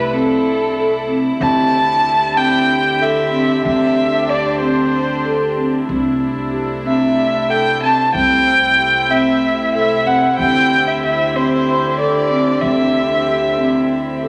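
A dark, smoothly bowed solo violin with light vibrato sings up front over floating sul tasto chamber strings, a mellow soft-mallet vibraphone playing ringing arpeggios and a woody pizzicato upright bass in this playful, shimmering contemporary chamber piece in 7/8 at 187 BPM counted in eighths, its C69 and D9sus4 chords bathed in a wet concert hall reverb, heard as a fragment cut from a longer work.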